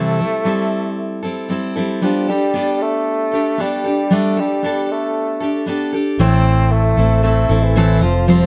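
Tender and reflective, this acoustic pop excerpt opens with a full-bodied picked steel-string acoustic guitar accompanying a bassoon melody, played in a classical style with vibrato and a distant, roomy plate-reverb sheen. At 6.2 seconds a dark, round, foam-muted fingered electric bass arrives with punchy presence as the harmony settles onto A minor. At 6.9 seconds an ethereal, very quiet detuned pad drifts in with a warbling ensemble-chorus shimmer, all captured up close with light room reverb.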